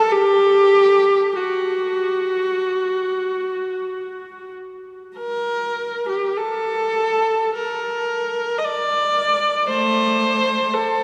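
A long, wet cathedral reverb surrounds this short excerpt from a longer classical work, the room heard from further back while the solo viola sits up front. The single bowed viola plays alone from 0.0 to 11.0 seconds, its warm, focused tone carrying vibrato and a smooth top as it moves between A3 and Eb5. The mood is meditative and yearning, with an expressive freedom to the phrasing.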